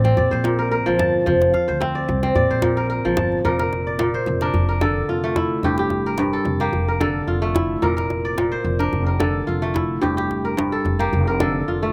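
Warm and flowing, this short cut from a longer piece of West African string and xylophone music moves at 110 BPM in 4/4 with a gentle swing on the sixteenths. The kora sits up front, its bright, ringing arpeggios fingerpicked with a crisp edge and touched by a slapback echo, spanning G2 to A5. Beneath it, a pizzicato upright bass with steel strings gives a woody, warm low end between F1 and D2. A medium-tuned djembe played with soft hands stays close and dry in the background, dropping out at 11.5 seconds while the strings carry on to the end. The harmony opens by moving between Bb and F, then from 3.4 seconds settles over an F in the bass through Bb, Dm and Gm shapes. Recorded outdoors with only light reverb, the sound feels open and natural.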